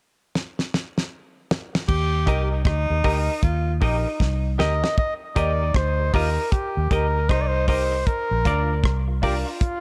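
An up-front flugelhorn carries the melody from 4.6 s with light vibrato and a close-miked presence, trailed by tape echo, while a breathy, whispered tenor saxophone with scooped notes and its own tape echo plays a second line from 1.9 s. This uplifting roots reggae excerpt in Eb major moves at 78 BPM with a swung 16th feel, opening on a dry, dark drum kit with a fat snare and rolled-off top that plays a fill before the round, foam-muted bass enters. In the background, a bright, clean semi-hollow guitar with tape echo and polished piano stabs fill out a small, lightly reverberant room, with the harmony moving from Eb to Bb near the close.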